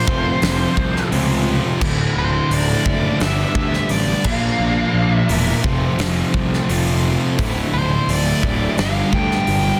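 Quiet-loud alternative rock at 86 BPM in a straight 4/4, this brief excerpt carries a dark, angsty mood over a chord cycle of F, Dmadd9, G and Bb. A nasal lead guitar with a parked wah carries the melody between C5 and G5, its overdriven tone trailed by a slapback echo. Underneath, a crunchy, bright overdriven guitar and a thick, dark fuzz guitar play riffs from the background, while a growly fuzz-picked electric bass adds grit at the bottom. A huge arena drum kit sits up front with a punchy kick, fat snare and bright cymbals in a pumping hall sound. Entering at 1.1 seconds, a deep, very quiet ambient pad of detuned sawtooth and sine voices with a sub octave and chorus holds sustained chords beneath it all. The mix has light reverb and a dense, heavily limited modern master.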